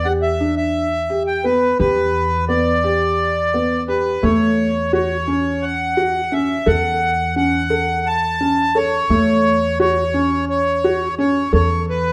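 Contemporary chamber music in 7/8 at 173 BPM (eighths), tuned to A4 = 444 Hz, this hypnotic, urgent excerpt moves from Em7 to F#m/E at 4.2 seconds. An up-front, reedy accordion carries the melody with slow beating, over soft arpeggios from a felt-muted upright piano that sounds mellow and intimate, its action noise audible. A woody, thumpy pizzicato upright bass on gut strings holds a low E, and the parts sit in a moderate recital hall reverb.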